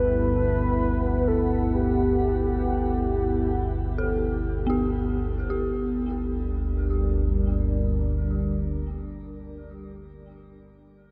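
In free time, this desolate, ominous dark ambient drone fragment sets a deep, rumbling, warbling drone and a moody sawtooth pad under a round, horn-like synth lead that carries the melody until 4.6 s, while an eerie, inharmonic bell enters at 4.0 s with arpeggios through shimmer reverb and diffuse delay, all washed in a huge, dark room as the harmony moves from Em to Gm at 5.5 s.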